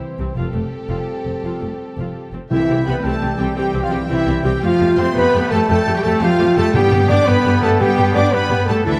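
A roomy scoring-stage reverb surrounds this heroic, triumphant adventure film cue, a brief excerpt in C major moving in 6/8 at 113 BPM. Lush, vibrato-rich violin sections carry the melody and a second line, while violas, cellos and an up-front double bass section fill out the harmony and bass, set against quiet trombone chords and mellow, vintage-toned trumpet stabs. At 2.5 seconds the texture broadens as a prominent mellow French horn section takes up sustained chords, an airy flute ensemble, oboe and distant clarinet add second lines, and hard-mallet timpani on calf heads strike at 2.5 and 6.7 seconds.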